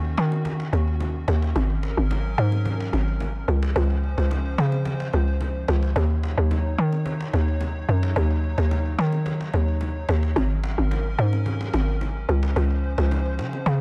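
A straight 4/4 amapiano groove at 109 BPM, this deep, late-night excerpt in Eb dorian sets an up-front, bouncy log drum bass with a hollow, percussive FM tone against a woody, distant cajon carrying tape echo and faint snares, very quiet, bright, vintage bongos and congas struck with hard hands from 0.2 seconds, and a soft, airy, flute-like pad with chorus sustaining Ebm7, Ab9sus4 and Dbmaj7 chords, set in a small-room, echo-heavy mix.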